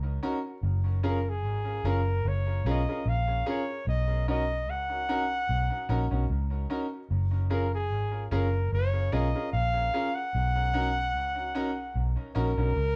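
Over a lilting 74 BPM lovers rock reggae groove with a gentle sixteenth-note swing in F# major, a dark, round, foam-muted fingered electric bass sits up front from the start, a clear, intimate grand piano with audible action noise and dub echo enters at 0.2 seconds, and a warm flugelhorn takes a jazz-style solo melody from 1.1 seconds with light vibrato, soft attacks and scooped notes, all moving sweetly and romantically between Bmaj9 and F#maj7 in a moderate studio room where the band plays live together in this brief excerpt cut from a longer piece.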